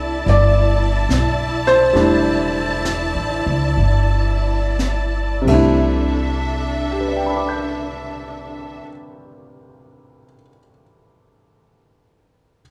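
Recorded live in one room with a large studio's moderate reverb, this tender, intimate jazz ballad excerpt in swung 4/4 slows over its first 5.8 s as a natural-sounding baby grand piano with short sustain accompanies close, vibrato-rich bowed strings and a woody, bright pizzicato upright bass sitting up front, while a dark, smooth brush kit with a high-tuned snare and boomy kick plays until 5.6 s, the strings and bass stop at 8.8 s, and the piano carries on alone to 12.6 s.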